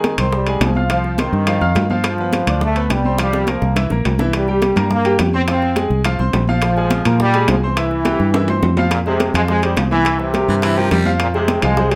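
A fiery, danceable salsa excerpt at 210 BPM opens with a brilliant, tight trombone section carrying the melody with light vibrato over a clear grand piano, high-tuned bongos and faint, thin-skinned congas, and ringing metal-shell timbales, with drum fills at 3.2 and 8.3 seconds and a round, dark fingered electric bass entering up front at 0.2 seconds, before the music settles into F harmonic minor at 8.9 seconds and a raspy, gritty baritone saxophone adds a brief second line at 10.5 seconds, all in a small, wet room.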